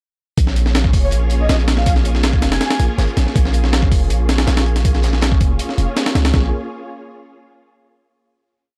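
The recording is dry and gritty, with a raw hardware edge to this short, frenetic drum and bass and jungle piece at 161 BPM in Bb minor. From 0.4 seconds a heavily chopped, compressed sampler-style breakbeat sits up front, with a thumpy kick and a high-tuned snare, while a second looped breakbeat with edits runs very quietly beneath it, dark, saturated and rolled off at the top. A deep, sine-toned 808-style bass carries a dub-style line of long, decaying notes, while a silky vintage string machine holds Bbm7-rooted chords with syncopated pushes, moving one shape in parallel under an ensemble chorus. Between 1.0 and 2.8 seconds a breathy, flute-like synth lead drifts in the background with tremolo, vibrato, 12-bit sampler grit and dub echo. After the drop, the piece closes on a final chord from 6.3 seconds.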